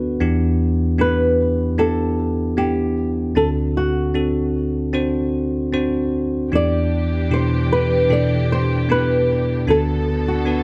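Melancholic and longing, this excerpt of a straight 4/4 pop ballad in E minor at 76 BPM opens with a bell-like, up-front tine electric piano moving through Em7, D7 and Bm7/D, joined at 1.0 seconds by a dark, thumb-plucked flamenco guitar carrying the melody and at 6.5 seconds by a smooth bowed string section with light vibrato holding quiet sustained chords, all set in a moderate recital hall reverb.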